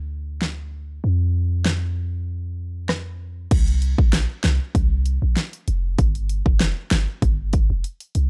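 Tough and sultry, this short dancehall excerpt moves at 97 BPM in a straight 4/4, cut from a longer piece. A clean 808-style bass opens at 0.0 s, sitting up front with a deep, boomy sine tone that has a fast attack and a mellow decay, spanning F1 to F2. A pop drum kit joins at 0.4 s, electronic and layered, with a punchy kick, fat snare, bright hi-hat, rim click and crash cymbal placed up front in the mix. The kick drops out from 1.0 to 3.5 s, and the arrangement shifts into a new section at 3.5 s that carries through to the end at 8.3 s. The sound is dry and gritty, with little reverb, giving the groove a close, hardware-recorded edge.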